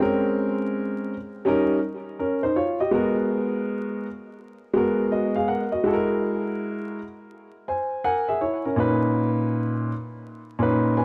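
An intimate, woody upright piano plays alone and up front through this smooth, swung hip hop excerpt, its long sustain touched with tape echo and audible action noise, adding a brief fill at 7.7 seconds over ninth chords, set in a dark, warm production with echo-chamber reverb, small-room ambience and vinyl crackle.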